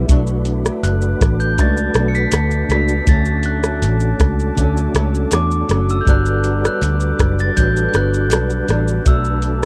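Indie bedroom pop at 80 BPM in B minor, mellow and lonely, where a soft analog rhythm box with a deep kick, metallic hats and rim click sits up front beside a dark, round, foam-muted fingered bass, while a fingerpicked flamenco guitar with finger squeak and lush, drifting chorus moves through Bm7, Dmaj7 and Gmaj7 under a flute-like percussive tonewheel organ spun through a fast rotary speaker and cassette tape, a nostalgic detuned pad entering at 0.5 seconds in the background, a bell-like glockenspiel melody played with rubber mallets arriving at 0.8 seconds alongside very quiet crisp handclaps, all captured in a dry, close 1970s-style studio sound in this excerpt from a longer piece.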